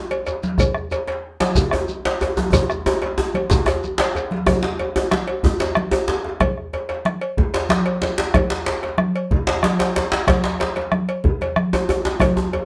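West African traditional drumming from a drum ensemble, driving and powerful, moving in a straight 12/8 feel and cut from a longer piece. Deep, dark bombo sits close, while bright, thin-skinned congas played with soft hands carry a compressed, saturated edge. A metallic cowbell rings close and dry, and a grainy, mellow shekere adds texture only until about 4.2 seconds. Two djembes join in: one tight and cracking, set back in a large room, and a second entering at 1.4 seconds, medium-tuned with metal rattles, struck with hard hands and placed up front despite its distant, roomy sound. A drum fill from 2.5 to 4.5 seconds leads into the second section, and moderate studio reverb gives the ensemble a shared sense of space.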